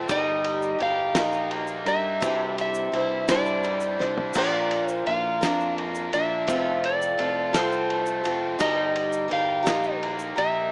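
A lightly driven lead guitar sits up front and carries the melody in a high register, its dark, slightly broken-up tone held even by compression. This nostalgic, warm clip of folk rock and heartland rock moves in a straight 6/8 at 56 BPM counted in dotted quarters, tuned to A4 = 436 Hz and cut from a longer piece. A boxy acoustic archtop guitar, picked with audible finger squeak, plays the accompaniment prominently, while a biting, double-tracked overdriven guitar plays a bright riff beneath it and a round, punchy fingered bass anchors the low end. In the background, a cloth-damped, thuddy drum kit with a fat snare, tight kick and dark cymbals plays throughout, marked by a fill from 4.0 to 4.4 seconds, alongside a grainy tube shaker. The chords move from Eb/G through Cadd9, Bb and F before returning to Eb/G, all heard through a rough home demo mix with small room ambience and a small speaker sound.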